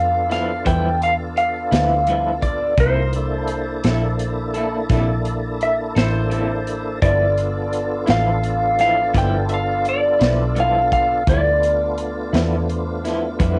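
A slightly broken-up, lo-fi lead guitar through a small old amp opens this laid-back, gritty slow blues in 12/8, its phased melody sitting over a full tonewheel organ with chorus vibrato and slow rotary speaker and a round, foam-muted picked bass up front, before a compressed second guitar with tremolo and a crunchy, dark breakbeat kit with a tight kick and rolled-off top enter at 0.3 seconds, the harmony moving from G13 to C13 and back in a home cassette recording where the guitars and organ carry plate reverb and tape coloring.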